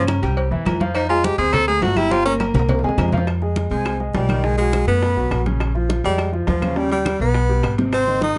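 Set in a moderate studio reverb with a softened top end, this driving, fiery slice of Afro-Cuban jazz in 4/4 puts a clear tenor saxophone with vibrato up front, soloing over a long-sustaining baby grand piano and a dark, thumpy pizzicato upright bass on gut strings. Bright, damped congas sit close and dry, while woody claves, round low-tuned cowbell and bongos, and ringing timbales with agogo bells in a live room stay in the background, with a drum fill at 2.1 seconds. From 3.7 seconds a breathy, straight-toned concert flute adds a soft second line high above.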